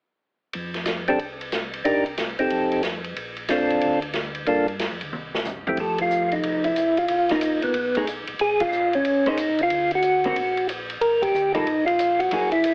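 Soulful and swinging, this brief soul jazz organ trio excerpt moves at a brisk 184 BPM in F major with a strong swung eighth-note feel. A mellow, round tonewheel organ holds down the bass line low in the register, its key click and slow rotary speaker giving it a dark, clean character, while a swinging big-band drum kit with a punchy kick and medium-tuned snare drives along on hi-hat, ride cymbal and toms in a natural studio room. From 1.1 seconds a second tonewheel organ carries the melody up front, its percussive third-harmonic attack and slow rotary speaker giving it a distinct voice, working through changes such as Cm7, F7, Bbmaj7 and Gm7. A drum fill leads into the second section at 5.8 seconds, where a clean, picked hollow-body electric guitar joins with compressed comping over chords including Fmaj9, Bbm7 and Daug, and the band hits accents along the way. The whole mix sits in moderate reverb and is heavily squeezed into an AM-radio sound, and the recording is cut from a longer piece.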